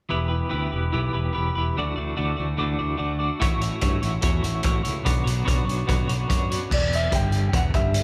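Indie rock at 146 BPM in E dorian, this short excerpt cut from a longer piece feels bittersweet and restless, moving through Em, Dadd9, A6 and Bmadd9 before returning to Em. A clean, compressed twelve-string electric guitar with tremolo carries the riff up front from the start, alongside a growling fingered electric bass that sounds bright and overdriven. A loose acoustic drum kit enters at 3.4 seconds with a punchy kick, hi-hat and crash cymbal, its sound saturated and gritty with a rolled-off top. At 6.7 seconds a dark upright piano takes the melody between D5 and G5, woody and mellow with long sustain. The band plays live in one large studio room, and moderate reverb gives the whole a natural sense of space.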